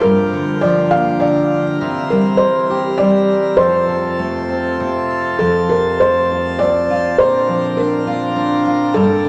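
This gentle, innocent children's lullaby in F major opens with a felt-muted upright piano carrying the melody, its dark, thick-felt tone and audible action noise sitting close and intimate, over a full-bodied, fingerpicked nylon-string guitar placed up front and a pipe organ holding sustained plenum chords with brilliant mixtures and a touch of chiff. At 101 BPM in a straight 3/4, the harmony moves from Gm7 through C7 to F, then settles on Bbadd9 at 7.2 seconds. A wet church reverb with a 3.2-second decay surrounds this short excerpt, which is cut from a longer piece.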